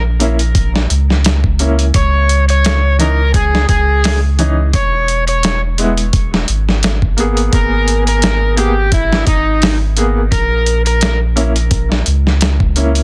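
An overdriven slide guitar carries the melody from 2.0 to 11.2 s, its tape echo trailing over a brooding, dark trip hop groove with a swung sixteenth feel. A deep, round dub sub bass sits up front beside a gritty, dusty soul sampler-style drum kit with a thumpy kick and overdrive, while a bright, woody upright piano with tremolo and tape echo plays accompaniment through chords such as C#m, E and G#madd9. The dry, dense mix is heavily limited, and the passage is cut from a longer piece.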